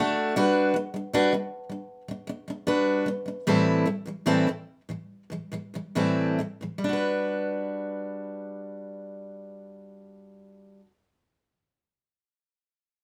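In a straight 4/4 that eases and slows through its opening 6.8 seconds, this easy-going, heartfelt pop fragment features a single picked steel-string acoustic guitar, up front with a warm auditorium-body tone in a moderate studio reverb, moving through Gmaj7 and Am7 before settling back on Gmaj7 as a brief second section arrives at 6.8 seconds.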